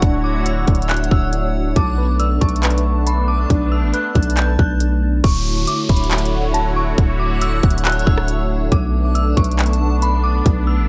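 A dreamy, floating stretch of atmospheric cloud-rap opens with a trap kit, deep sine 808 bass and an evolving, detuned sawtooth pad all sounding together at 138 BPM in a half-time 4/4 feel, set in D major over Dmaj7 and Bm7 chords. The kit sits up front with a hard-clipped kick, crisp hi-hats, handclaps and rim clicks, while the long, mellow 808 holds low notes with a fast attack and decay. From 0.2 seconds an eerie, inharmonic FM bell carries the melody high above, its chorus, phaser and delay giving it a haunted shimmer. Soft, round electric-piano-like keys play arpeggios in the background with tremolo and a darkened filter until 5.2 seconds, when an electronic downlifter sweeps in. Beneath it all, a reversed, granular swelling texture hovers quietly, and the bright, resonant pad pumps against the beat, all under a light reverb in this fragment of a longer piece.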